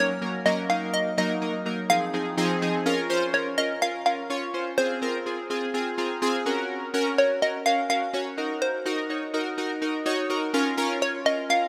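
A hollow, nasal square-wave pluck carries the melody from the start over glossy, chorused retro synth keys built from pulse and sawtooth tones with a filter sweep, both sitting up front in a lush hall reverb. This bittersweet, driving pop passage in Bb minor moves at 125 BPM in a straight 4/4, with a short build-up giving way to a drop at 2.9 seconds. A synth keys fill arrives at 5.7 seconds as the bouncy, detuned pluck keeps evolving above the bright chords.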